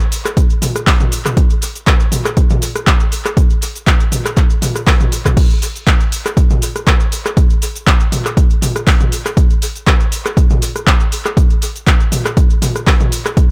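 A punchy electronic kick drum sits up front from 0.4 seconds, driving this raw house excerpt alongside an analog drum machine whose crash cymbal, handclaps, hi-hat, rim click, shaker and toms carry tape echo and a slight swing, both re-recorded in a small room for a dry, echo-heavy mix that stays on the drop throughout.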